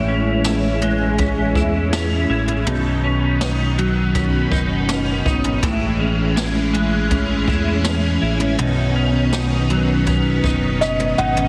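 Dream pop at 81 BPM in A lydian, floating and ethereal, where shimmering vintage string-machine violins hold up-front chords with ensemble chorus and a low-pass filter over dark, clean picked electric guitar arpeggios with chorus and digital delay, a round, deep analog bass, and a brushed jazz kit with a boomy kick entering at 0.4 s, all moving between Amaj7 and Badd9 in a lush hall with a heavily compressed radio sound, until, alongside a drum fill at 10.8 s, a soft, felt-muted upright piano melody with audible action noise enters.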